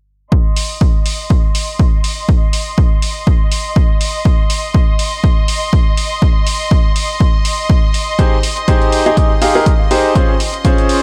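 Joyful and uplifting, this piano house excerpt moves at 122 BPM in 4/4 with a light swing on the sixteenths. From 0.3 seconds a punchy analog kick drum sits up front, joined shortly after by a quieter electronic hi-hat. A smooth, bowed violin section holds sustained chords with vibrato, its sound pumping against the kick through sidechain compression while a low-pass filter sweeps across it. At 8.2 seconds a clear baby grand piano enters up front with an intimate riff, its natural tone carrying audible action noise, pumping as well and trailed by analog delay. The harmony moves from Cm/Eb to Abmaj7 and then Dbmaj7, all set in a small, echo-heavy room.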